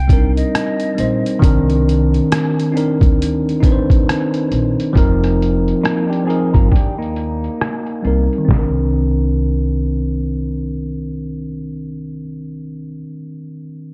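Hazy and reflective, this excerpt from a longer lo-fi hip hop piece drifts at 68 BPM in C minor with a swung sixteenth feel, opening on an airy, mellow concert flute with vibrato and tape echo that ends at 1.4 seconds, while a woody pizzicato upright bass and a bright, bell-like tine electric piano, softened by cassette tape and a low-pass filter, carry chords from Cm7 through Cm9, F7sus4 and Eb6 under a filter sweep, and a gritty, pitched-down sampler-style drum kit with a thumpy kick and medium-tuned snare sits up front until 8.7 seconds, with a clean, fingered electric guitar adding a brief, echoing second line from 5.8 seconds, all inside a dark production with light digital ambience.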